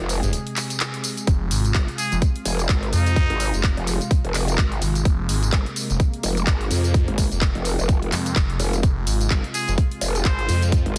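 A dense, heavily limited mix with light reverb carries this bouncy, gritty bass house excerpt at 127 BPM in F minor, its swung 16ths driven by a tight, up-front electronic kick that lands at 1.3 s after a short break, alongside a tape-warm house kit of handclaps, hi-hat and tambourine. Two pumping basses dominate: a growling, wobbling unison bass with formant filtering and chorus, and a swirling, thick detuned saw bass steeped in phaser and overdrive, while a bright, evolving pad with ring modulation and a filter swell holds sustained chords beneath. A nasal, brilliant trumpet with straight mute and vibrato plays brief solo phrases through tape echo, first at 2.0 s and again at 9.5 s.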